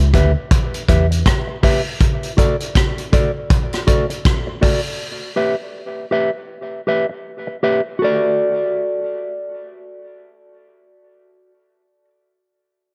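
A round, foam-muted fingered electric bass opens this laid-back, spacious dub reggae excerpt, dropping out at 1.2 seconds, while a vintage acoustic drum kit with a punchy kick, hi-hat and rim click plays in a swung 4/4 until 4.8 seconds. A dark, clean, mellow electric guitar carries the accompaniment throughout over a move between E minor and D, its tape echo filling the echo-heavy mix with its light reverb.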